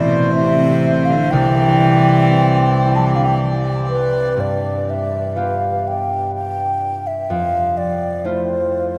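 Soaked in huge, dreamy ambient reverb, this nostalgic, pastoral Celtic slow air drifts at a rubato 62 BPM in 3/4 and G mixolydian, with an airy, wooden baroque flute carrying the vibrato melody up front through analog delay, a ringing, fingerpicked concert harp accompanying throughout, a rich, gut-string cello bowing a period-style second line until 3.3 s, and a reedy, slowly beating accordion holding boxy sustained chords until 4.3 s, as the harmony moves from Am and Cadd9 to G7 and Fmaj7 in this cut from a longer piece.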